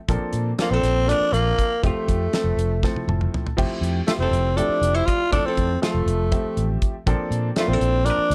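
A 7/8 pulse at 241 BPM counted in eighths, with a straight feel, sets this soaring, funky electric jazz fusion cut from a longer piece in F major, the harmony moving from Bbmaj9 to Fmaj9 and back to Bbmaj9 near 7.1 seconds. A damped 70s drum kit sits up front with a dry, airy sound, dark cymbals, a fat snare and a tight kick, joined from the start by a round, punchy fretless electric bass and a clear, present grand piano accompanying in the middle register. At 0.6 seconds a growling tenor saxophone takes the solo melody, raspy and gritty with a light vibrato, while an archtop guitar, clean, picked and compressed with a hollow-body tone, adds a second line in the background. Around 2.8 to 3.6 seconds the drums and piano both play fills before the opening section repeats. Light reverb and a dark, warm production round out the whole.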